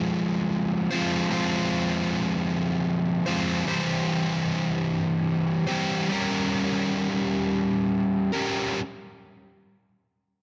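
A dark, lossy-sounding production bathed in concert hall reverb frames this brooding, melancholic rock fragment in 6/8 at a slow 40-51 BPM in F harmonic minor, where a sludgy, overdriven, double-tracked electric guitar, picked and placed up front, plays alone from 0.0 to 8.8 s over Fm, C/E and Gdim, slowing down from 3.7 s.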